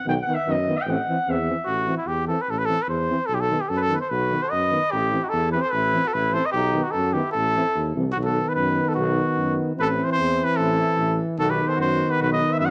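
A warm, vibrato-tinged flugelhorn opens this restless, virtuosic excerpt of Balkan folk brass in A dorian sharp 4 at 149 BPM in a swung 2/4, soon joined by a soft-attack French horn in the background, a smooth-topped trombone and a mellow, roomy tuba on the bass, before a clear, classical-style trumpet takes the up-front melody at 1.7 seconds over alternating B and Am chords, all set in a moderate echo-chamber reverb.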